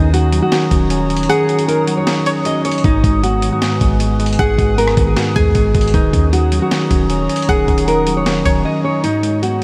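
Menacing and brooding, this short cut from a longer trap-leaning hip hop piece moves at 155 BPM in a half-time feel in G# minor, tuned slightly sharp, cycling between D#m7 and G#m7. A full-bodied, fingerpicked nylon-string guitar carries the melody with audible finger squeak, softened by a low-pass filter and trailed by tape echo, while a mellow tine electric piano, also filtered, fills in the accompaniment below it. A warbling, detuned tape-like pad holds nostalgic sustained chords with chorus and its own reverb, and a deep, boomy, clean 808-style bass anchors the low end until it drops out at 8.6 seconds. The boom bap sampler-style drum kit sits up front with gritty 12-bit character, a thumpy kick and a high-tuned snare alongside hi-hat and rim click; the kick is muted from 1.3 to 2.8 seconds, and a brief break arrives at 8.6 seconds. Entering at 1.3 seconds, a twangy, nasal resonator pluck with chorus and tape echo traces a bright second line in the background, and the whole dreamy mix is soaked in a huge ambient reverb with a bed of vinyl crackle.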